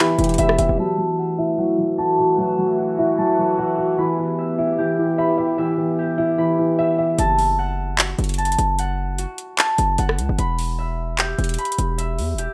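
Hip hop trap excerpt at 150 BPM in half-time, menacing and brooding in F# phrygian, where a dark, intimate grand piano with audible action noise accompanies and a resonant, wave-folded sawtooth pad holds sustained chords under a filter sweep until 7.2 s, while a fingerpicked, ringing concert harp with tape echo plays arpeggios throughout; after a brief hit at 0.2 s, a punchy, sine-based 808-style bass and an electronic trap kit with metallic hats, handclaps and rim clicks return at 7.2 s, set in a rough home-demo mix with wet studio reverb.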